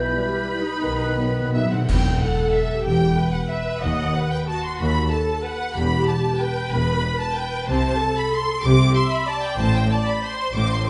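Set in a moderate scoring-stage reverb with a softened top end, this excerpt from a dark, bittersweet orchestral ballroom waltz in E minor moves at 161-203 BPM in a rubato 3/4: two rich, vibrato-laden violin sections carry the melody and a second line over up-front violas, a focused cello section and even double basses, while a distant flute ensemble, a background clarinet, a close-miked mellow bassoon and a very quiet French horn section colour only the opening 1.7 s, timpani on calf heads fill from 0.8 s, and bright, dry clash cymbals with concert bass drum strike an accent at 1.9 s.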